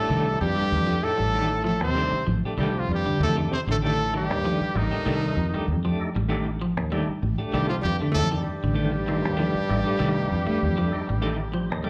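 A bright, vibrato-laden trumpet carries the melody from the first moment, set up front over a raspy, gritty alto saxophone and a warm bass trombone that play a second line further back, the two upper horns touched by slapback echo. This afrobeat excerpt moves at 97 BPM in 4/4 with a light swing on the sixteenths, sitting on a single Cm69 chord in C dorian for a hypnotic, intense feel. An electric guitar at the edge of break-up, twangy and treated with analog chorus, plays fingered arpeggios in the background, while a clean, picked semi-hollow electric guitar adds tremolo-shaded stabs. Entering at 0.1 seconds, a round, dark, foam-muted fingered electric bass drives the groove up front, and a fat, lightly overdriven tonewheel organ with percussive third-harmonic attack and slow rotary speaker murmurs very quietly underneath. That organ adds a short fill from 11.2 seconds, all of it heard through a venue's PA with small-room club reverb, as if cut from a longer live set.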